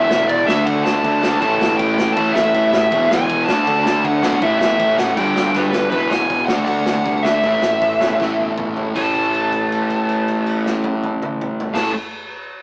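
A rough rehearsal-room recording with a small-speaker sound and light reverb frames this aggressive, raw punk rock excerpt, cut from a longer piece. Up front, a dark, smooth overdriven lead guitar carries the melody over chords built on D5, A5, E, G and D, and a held note sustains from 9.0 seconds. Behind it, a crunchy overdriven guitar and a sludgy distorted guitar pick out the riff throughout, joined by a double-tracked fuzz guitar that drops out at 5.9 seconds. A growly, bright fuzz bass, direct and amped with overdrive, sits in the background beneath them. The acoustic garage kit has a pumping small-room character, a punchy kick, a medium-tuned snare and a gritty, saturated, rolled-off top across crash, hi-hat and toms, with short drum fills marking the shifts between sections.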